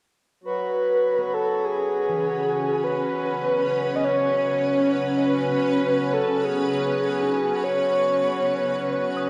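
A breathy, flute-like synth lead with a soft, warbling vintage character carries the melody up front from 0.5 seconds, dressed in chorus, tape coloring, shimmer reverb and delay, over a reedy pedal harmonium drone that begins at 0.4 seconds. A cloudy, evolving granular pad joins at 2.1 seconds with sustained chords in its own built-in and shimmer reverb, while a mellow, fingerpicked concert harp fades in from the background with ringing arpeggios. This spacious, reflective ambient excerpt moves at a slow 50 BPM on a C#m7 chord, set in a wet concert hall.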